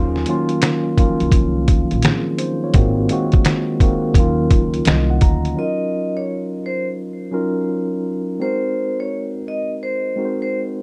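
A mellow tine electric piano with cassette-tape colour opens this hazy, melancholic lo-fi hip hop excerpt over a woody, pizzicato gut-string upright bass and an up-front, muffled, pitched-down sampler-style kit of finger snaps, hi-hat, snare and a thumpy kick, swung on the sixteenths, until the bass stops at 5.5 seconds and the drums at 5.6, when a ringing, metallic vibraphone with its motor off takes a brief melody over the piano's Ebm9 and Ab7 chords, all in light reverb.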